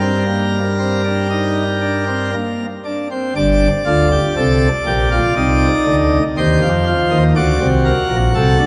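A serious, solemn baroque-style classical fugue in three parts for solo pipe organ, in G minor at 60 BPM in a straight 4/4 and tuned to A4 = 439 Hz, sets a full, brilliant plenum with mixtures, baroque voicing and chiff up front, ranging from G1 to D5, in a cathedral reverb with a 4.4-second decay and vinyl crackle, moving from G minor through Ebmaj13/C at 5.4 seconds to D7 at 7.4 seconds in this short cut from a longer piece.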